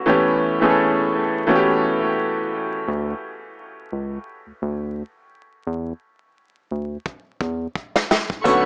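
A woody upright piano with dub echo opens this tough, reflective boom-bap hip-hop cut at 86 BPM, giving way at 2.9 seconds to a round, deep analog bass through the break, before a dark brush drum kit with a punchy kick plays a fill from 7.1 seconds and the piano returns beside lush bowed strings and faint, jingly sleigh bells at about 8.4 seconds, the mix carrying vinyl crackle, heavy echo and a small-speaker sound.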